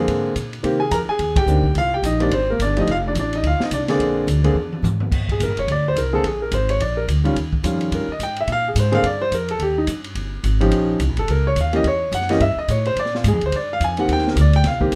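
A clear concert grand piano and a woody, pizzicato upright bass open this brisk, sophisticated jazz piano trio excerpt, with an open jazz drum kit joining a moment later. The tune swings lightly at 214 BPM in 4/4 in B-flat mixolydian, moving through chords such as Bb9, Cm7 and F7. The whole band hits an accent at 1.3 seconds, and the drums play a fill from 4.5 seconds that leads into the piano's solo at 5.1 seconds, which carries through chords like Eb9, Em6 and Bb7. The piano sits up front with deep bass and long sustain. The bass, also forward in the mix, is thumpy and gut-strung. The drums sit further back in a small room with dark cymbals, a medium-tuned snare, a boomy kick and a smooth, rolled-off top, all under light reverb.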